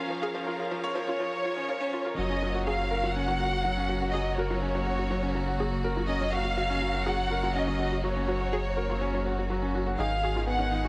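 This tender, hopeful piano and strings electronica excerpt opens with a dark, expressive violin section carrying the melody up front, its bowed tone shaped by vibrato, portamento and a digital delay. Beneath it, a lush studio string section holds sustained chords, a bright baby grand piano plays a riff whose worn, intimate sound carries audible action noise, and a detuned sawtooth analog pluck traces arpeggios in the background through chorus and delay. The first 2.2 seconds form a build-up over A#m. At 2.2 seconds the drop arrives on F#, and a deep, round sine sub bass enters up front and mellow. The harmony moves to G#m at 10.0 seconds, all within a huge ambient reverb and a high-pass filter that give the piece a spacious, airy sheen.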